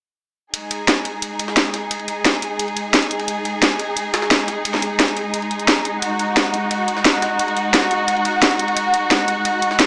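Dark technical drum and bass with an aggressive, futuristic mood, heard in a short section cut from a longer piece. A dark studio string section holds sustained G#5 chords from 0.5 seconds, its bowed ensemble sound woody and lush with vibrato, placed up front yet carrying a distant quality. Alongside it, an electronic, layered drum kit drives the track with a cracking snare and bright hi-hats, overdriven and re-recorded in a small room so it sits forward in the mix. Underneath, a very quiet sampler-style jungle kit adds a gritty, compressed, pitched-up texture through its high-tuned snare and ride cymbal. The whole is bathed in a moderate digital room reverb and carries a small-speaker character.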